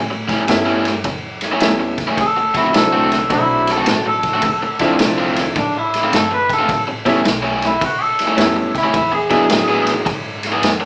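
Laid-back and gritty, this electric blues shuffle swings easily through a short cut from a longer performance, moving over A7, D7, Dm7, back to A7 and on to E7. The vintage drum kit sits up front with a punchy kick, a medium-tuned snare and dark ride cymbals, its saturated, rolled-off sound carrying the grain of a small room. A raw garage guitar drives the riff with a bright, overdriven, picked edge, while a woody pizzicato upright bass with steel strings stays in the background underneath. A brilliant, polished upright piano adds present accompaniment with long sustain from 0.5 seconds. At 2.2 seconds an electric guitar through a small old amp steps forward with a twangy, slightly broken-up, picked melody that runs until 10.2 seconds. The band sounds as if it is playing live in one room, with light reverb and a small-speaker character.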